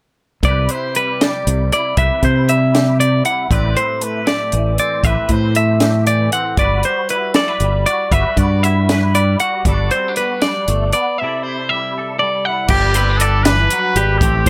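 Math rock with a midwest emo lilt, this short excerpt moves at 78 BPM in a straight 6/8, intricate and playful in C lydian. A bright, compressed clean electric guitar spins picked arpeggios up front, while a punchy, direct fingered bass holds the low end and a compact cocktail kit adds a dry, high-tuned snare, punchy kick and dark cymbals. Beneath them, a second twangy guitar, darker and fingered, plays accompaniment through an ensemble chorus. The harmony drifts through lush extended chords, from Cmaj9 through Am11 and Gmaj9 to C69. At 12.7 seconds a clear, vintage-toned trumpet enters with a short pop-style solo line carrying light vibrato, landing over a Gmaj7 as the cut ends at 14.5 seconds. The sound is close and dry, with little reverb.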